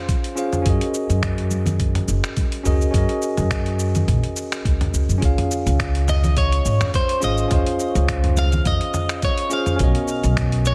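A relaxed, swung 4/4 groove at 105 BPM opens this blissful sunset chillout excerpt in D-flat major, built on a thumpy, gritty electronic kick and a dusty soul sampler-style kit of finger snaps, hi-hat, shaker and toms with a compressed, tape-warm character. Congas sit softly in the background, played with gentle hands in a small acoustic room. A bell-like tine electric piano carries the chords from the very start, its bright, clean tone drifting through a diffuse ambient delay, while a woody pizzicato upright bass with steel strings and tube saturation joins at 0.7 seconds as the harmony moves from Dbmaj7 to Gb69. At 6.1 seconds a twangy, picked electric guitar at the edge of break-up enters with the melody, its slightly broken-up tone shimmering through analog chorus and tape echo. The whole mix is dreamy and soaked in a moderate plate reverb, settling onto a Cbmaj9 chord near the close of the fragment.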